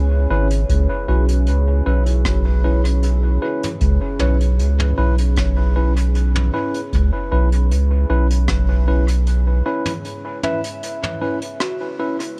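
Ambient dub at 77 BPM in C# minor, this spacious, deep passage cut from a longer piece rests on a single C#m7 chord, with a dark, detuned sawtooth pad holding sustained chords under a soft FM synth bell whose mellow arpeggios sit in the background through chorus, phaser and tape echo. An up-front, round sub bass carries the low end until 9.6 s, while a clean tine electric piano adds stabs through dub echo. A brushed vintage kit of hi-hat, rim click and toms, small-roomed with a rolled-off top, is soon joined by a dry analog kick that plays in the background until 8.7 s. The break arrives at 10.0 s, and studio reverb with tape saturation gives the whole a gently gritty depth.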